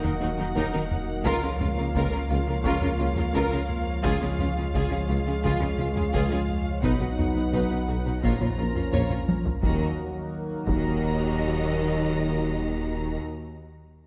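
Set in a dark, reverberant concert hall, this vast, futuristic hybrid orchestral and electronic film cue in Eb minor moves at 86 BPM in a straight 4/4, with a lush violin section carrying the melody over a warm, soft-attack second violin line, intense violas, smooth cellos, distant double basses, a mellow horn section, a soft-attack tuba, a shimmering, detuned pulse-width pad, a punchy sub bass with a pitch-drop attack, close and dry taiko drums that fill at 8.9 s, a very quiet warbling pluck arpeggio until 9.2 s, and a faint, intimate grand piano with audible action noise until 6.9 s.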